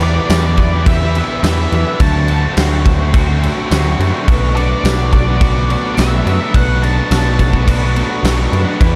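A dark, warm mix with little reverb frames this brooding, dreamy shoegaze and dream pop rock excerpt at 106 BPM in 4/4, moving through Em7, D7 and Bm7. A fuzzy octave-fuzz lead guitar carries the melody with distortion and tape echo, while a biting overdriven guitar plays a riff through reverse reverb, a raw garage guitar adds a softly chorused overdriven riff in the background, and a very quiet, twangy, compressed twelve-string electric guitar picks bright arpeggios. Underneath, a round, up-front picked electric bass and a big, natural rock kit with a fat snare, punchy kick and bright crash cymbals drive the groove, with a faint jingly tambourine entering at 0.3 seconds.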